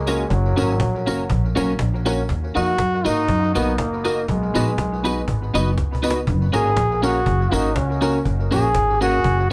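Bouncy and upbeat, this ska excerpt moves at 121 BPM in 4/4 with a light swing on the eighth notes, set in F# major and cycling through F#, D#m and B before returning to F#. Up front, a bright, punchy trombone carries the melody with a light vibrato and a smooth top, its phrases trailed by dub echo. Beside it, a woody pizzicato upright bass on steel strings sits just as prominently in the mix, while a clean, picked electric guitar with compression and analog chorus fills in the accompaniment. A dark, mellow upright piano, worn and slightly detuned with its action noise audible, adds intimate stabs that also carry dub echo. A snappy cajon struck with hard hands keeps time and plays a fill from 5.8 to 6.3 seconds, and a jingly, close and dry tambourine sits far back in the mix with its own dub echo, all inside a moderate small room.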